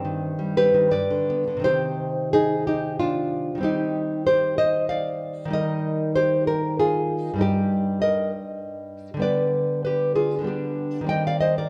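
Moving in a flexible, rubato three-beat lilt, this melancholic and wistful romantic piece for solo classical guitar drifts through minor-key harmony that settles onto a new passage at 1.6 seconds. The nylon-string guitar is fingerpicked and sits up front, its dark acoustic tone carrying audible finger squeaks across a span from low bass notes to high treble. A wet recital-hall reverb in a church or concert-hall space adds a lingering bloom to this short fragment of a longer work.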